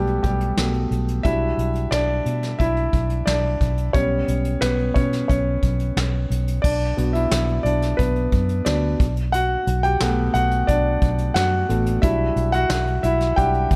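A concert grand piano leads this bittersweet yet driving piano-driven pop piece in B minor at 89 BPM. Its intimate, polished tone sits up front, with audible action noise and deep bass, as it carries the solo through both sections over Gmaj7/B, Em7/B and Bsus2 before turning to Bm at 6.6 seconds. A vintage foam-muted fingered electric bass sits close beneath with a round, amped tone, while a soft brush drum kit sounds distant and roomy, with dark cymbals, a medium-tuned snare and a punchy kick, all set in a small room ambience over a straight 4/4 feel.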